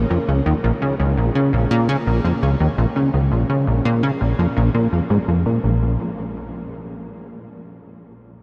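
A plucky analog bass with a punchy, funky sawtooth and pulse-wave tone carries this hypnotic, mysterious ambient fragment alone from 0.0 to 6.0 seconds, its fast-attack filter pluck decaying across a range of Bb1 to Db3 while analog chorus and delay color it. In Bb minor at 84 BPM in a straight 4/4, the bass sits up front in a dreamy mix soaked in a huge reverb with a 7.5-second tail. The passage shifts into a new section at 5.6 seconds.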